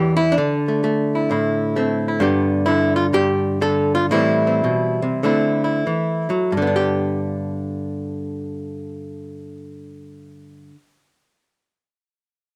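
A swung, rubato pulse that slows between 2.2 and 6.5 seconds carries this warm, playful solo jazz excerpt, where a single up-front archtop guitar, miked and amplified with a dark, clean, picked hollow-body tone in light reverb, moves through Dsus2, G, Am7 and D9 before settling back on G until it stops at 10.9 seconds.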